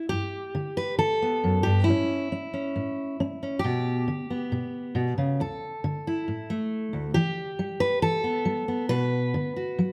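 Hopeful and nostalgic, this slow folk piece at 68 BPM in 4/4 features a lone fingerpicked steel-string acoustic guitar, full-bodied and up front, with finger squeak audible on the strings. The guitar moves through G, A, G/B, Dsus2, Em and Bm across its roughly ten seconds, ranging from D2 to B4, set in a moderate large-studio reverb that lends it space. It is cut from a longer piece.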